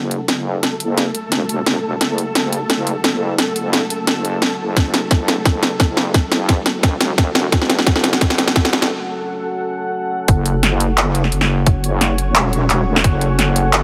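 An overdriven, up-front drum kit with cracking snare, bright hats and handclaps drives this dark, cinematic half-time drum and bass at 174 BPM in F# minor, playing a fill during the build-up over a moody, detuned ambient pad under a filter sweep, a mellow, deep wobbling bass and a grainy, flickering texture in the background, with a tight electronic kick joining at 4.8 s, a break at 8.9 s and a drop at 10.3 s, all set in a lush hall.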